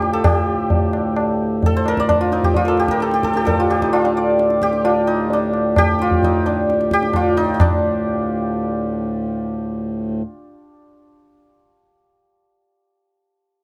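Close, detailed miking and light reverb frame this meditative, solemn fragment of Hindustani classical music in raga Bhairavi on D, tuned to A4 = 441 Hz and moving at 131 BPM in a straight 4/4, where a shimmering, hammered santur carries the melody up front between D4 and D5 until 11.3 seconds, a reedy, breathing pedal harmonium holds a full, dry drone low beneath it until 10.2 seconds, and a low-tuned tabla with a short ring provides percussion in a live room sound until 7.8 seconds.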